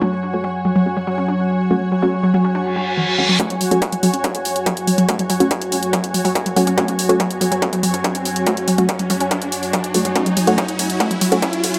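Driving peak-time techno at 142 BPM in F# minor, hypnotic and intense, this piece opens on a detuned analog pluck riff with dub echo, muted filtered dub chord stabs with tape echo, a moody ambient pad drone and a cloudy, evolving granular pad, each pumping against the sidechain. A reverse cymbal and riser arrive at 2.7 s. At 3.4 s a distorted, layered kick and an overdriven kit of hi-hat and ride cymbal join as filter sweeps on the pluck and stabs build toward a closing drum fill, all within an echo-heavy mix bathed in moderate spring reverb.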